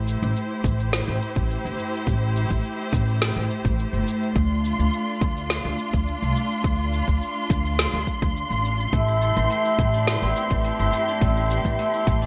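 Dark, lush bowed strings with sidechain pumping open this meditative, mystical organic downtempo excerpt over a woody pizzicato upright bass, soon joined by a layered electronic shaker and snare with gated reverb, a deep electronic kick from 0.6 s, and, from 8.9 s, a silvery, ringing guzheng playing up-front arpeggios through delay, inside a bright 1980s-style digital production with plate reverb as the chords move from Am7 to Dm7 and back.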